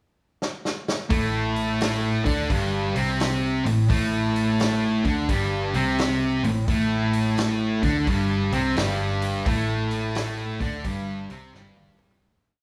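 A vintage acoustic drum kit opens with a fill at 0.4 s, its punchy kick and medium-tuned snare setting a driving, gritty blues rock and southern rock groove at 86 BPM in 4/4 with a swung eighth-note feel. At 1.1 s a bright, double-tracked fuzz guitar lands up front with an octave riff on Gsus24, doubled by a dark, round, foam-muted electric bass playing driving eighth notes. A moderate large-studio reverb and small-room ambience surround the trio, and the piece fades out from 9.5 s to its close at 12.2 s as the drums play a final fill.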